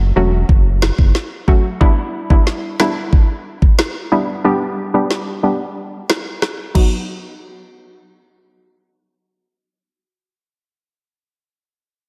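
Tough and bouncy, this dancehall clip at 91 BPM sits in a dreamy mix soaked in lush hall reverb, moving from F#m through Em7 and G to B. A round, deep analog bass with ring modulation opens it briefly before stopping at 1.1 seconds, while a hollow, nasal square-wave pluck with chorus, sidechain pumping and a filter sweep carries the accompaniment through 10.0 seconds. An electronic island pop kit with a knocking kick, woody snare, rim clicks and crash cymbal sits up front until 6.9 seconds, leaving the pluck to carry the closing section.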